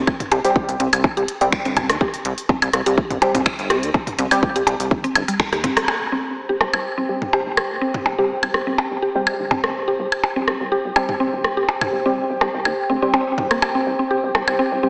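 A punchy, up-front electronic kick opens this hypnotic, sparse minimal techno cut alongside a crisp-hatted house kit with snaps and rim clicks, both dropping out by 5.9 seconds, while a clicky kit of blips, rims and toms, a rubbery, hollow square bass with sidechain pumping, and a woody mallet-like pluck riff and muted, detuned dub chord stabs, both run through analog delay and chorus, carry on; a warbling, nostalgic tape-like pad joins at 6.2 seconds and a faint bubbling filter texture at 9.5 seconds, all bathed in a dreamy hall reverb with a small-speaker character.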